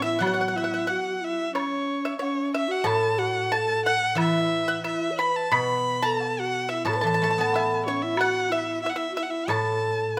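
Pastoral and graceful, this 10.2-second excerpt, cut from a longer piece of Chinese traditional chamber music, moves at 91 BPM in 2/4 with a rubato feel in the A gong mode. A clear erhu carries the melody up front, bowed by one player with smooth, even tone, vibrato and portamento. Beneath it, a breathy, mellow low xiao adds a second line, its bamboo voice close-miked with vibrato, a crisp attack and a slightly unsteady quality. A dry, percussive pipa played with fingerpicks shares that second-line role in the same register as the erhu. A guzheng, also played with fingerpicks, supplies ringing, silvery accompaniment in the low range, and from 0.2 seconds a woodblock with bright cymbals sits in the background, all within a moderate recital hall reverb.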